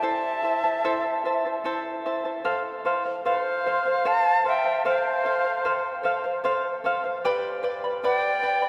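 Wistful and melancholic, this Andean folk fragment, cut from a longer piece, moves in an unhurried, even three-beat pulse. Two large wooden quenas carry the tune: the lead sings high and airy with vibrato and a soft attack, sounding distant. The second line sits just beneath it, closer to the ear, with a crisp, chiffy onset. Up front, a fingerpicked charango supplies the accompaniment, its double strings, some doubled at the octave, giving a shimmering sparkle. All three play throughout the fragment's 8.7 seconds, with the harmony shifting at 2.4 seconds into a longer second phrase. A drenched cathedral reverb from a church or concert hall lets every note hang and bloom in the air.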